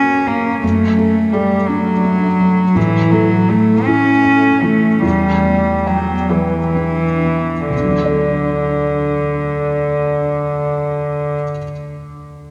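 A felt-muted upright piano, dark and intimate with audible action noise and an ensemble chorus, opens this tender neoclassical excerpt in a rubato 6/8 beside a rich, floating sul tasto cello played up front as a second line, the music slowing between 1.7 and 7.7 seconds before the cello drops away at 11.4 seconds and the piano carries on alone to 12.5 seconds, all soaked in a dreamy cathedral reverb.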